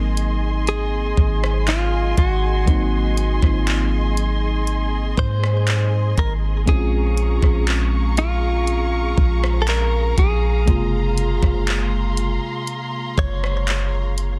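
Dense, heavily limited and bathed in digital ambience, this longing, sensual contemporary R&B excerpt at 60 BPM sets a clean, compressed direct electric guitar melody with delay over a round, warbling FM electric piano with chorus and tremolo, veiled con sordino strings sustaining lush chords in the distance, a deep, boomy 808-style bass, and an up-front electronic drum kit of knocking kick, hi-hat, handclaps and rim click that enters at 0.2 s, as the harmony moves from Ab7 to Bbm7 at 6.7 s and Gbmaj9#11 at 10.7 s.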